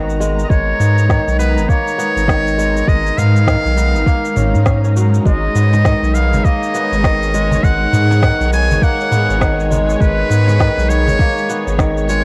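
Recorded at home on cassette with a light small-room reverb, this earthy, swung organic downtempo excerpt sets a buzzy, close-miked muted trumpet melody, colored by cassette tape and analog delay, over a distant, bowed symphonic string section pumping with sidechain, crisp fingerpicked kora arpeggios through analog delay, a round, deep analog bass held up front, a soft electronic kick and an organic electronic kit of shaker, woody snare and toms in studio reverb, with a very quiet, snappy cajon joining at 5.7 seconds.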